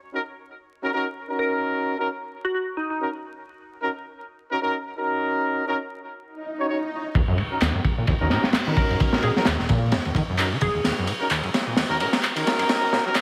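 Funky and swaggering, this breakbeat cut opens on a clear, punchy horn section firing tight stabs through a low-pass filter and dub echo, up front in the mix from the very start. A glassy wavetable pluck drifts in with a short melody at 1.4 seconds, its crystalline, warbling tone colored by chorus, a telephone-like filter and dub echo, and it returns later for a second phrase. An electronic swell ushers in the second half, where a crunchy, saturated breakbeat kit with a punchy kick, high-tuned snare and dark, rolled-off cymbals lands at 7.2 seconds alongside a squelchy, distorted acid bass riff thickened by lush chorus. Layered electronic handclaps join just after, and filter sweeps on the drums, bass and horns drive a build-up that ends in a drum fill from 10.8 seconds. The whole track sits in a moderate plate reverb, dusted with vinyl crackle, over an Ebm7 harmony.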